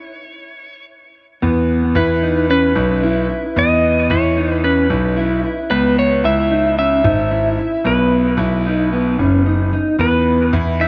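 A straight 4/4 pulse at 112 BPM carries this melancholic, hazy dream pop fragment, cut from a longer piece. It opens with a clean, dark lap steel guitar alone, its fingerpicked slide melody shaped by volume swells and dub echo, until at 1.4 seconds a mellow, compressed electric guitar joins with fingered arpeggios through analog chorus and echo, while a clear, polished concert grand piano holds down deep, short-sustained bass notes. Moving through E5, C#m7 and Badd9, all three parts sit up front in an echo-heavy mix bathed in moderate plate reverb.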